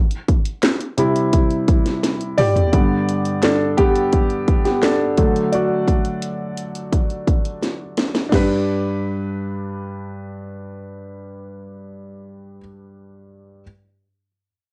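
A straight 86 BPM groove in 4/4 from an electronic house drum kit, with a punchy kick, cracking snare, handclaps, hi-hat, crash, toms and short fills, drives this uplifting, hopeful, piano-driven pop excerpt in G major from 0.1 to 8.5 seconds, while a clear, intimate concert grand piano with audible action noise and deep bass enters at 1.0 seconds to carry the accompaniment through C, G and D chords, both parts up front and tape-colored in a moderate reverb that gives the whole a homemade cassette character.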